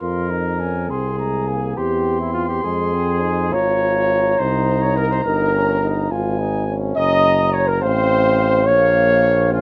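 A brass quintet sounds together from the opening, with a mellow trumpet carrying the high melody over a clear, vintage-toned flugelhorn second line, a warm French horn with light vibrato and a soft attack, a present trombone sitting in the background, and an up-front tuba anchoring the bass. Cut from a longer classical piece, this grave, heroic passage in a straight 6/8 moves from Fm through C/E, Ab and Eb7/G to close on Bbm at 8.7 seconds. A light reverb gives the ensemble a modest sense of space.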